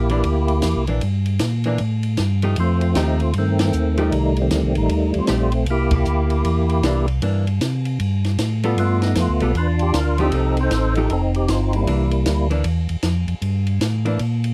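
A swinging 4/4 groove at 155 BPM drives this soulful, bluesy soul jazz organ trio excerpt, with a compact cocktail drum kit of dark cymbals, a high-tuned snare and a punchy kick keeping time while a round, mellow tonewheel organ carries the bass line from 0.0 to 14.5 seconds. Up front, a fat, lightly overdriven tonewheel organ with key click, third harmonic percussion, chorus vibrato and slow rotary speaker states the melody until 12.5 seconds, as a clean, compressed hollow-body archtop guitar comps underneath over C9, F9 and G9 chords. The dry, closely miked sound brings out every detail, and the full band hits accents at 3.5 and 5.9 seconds.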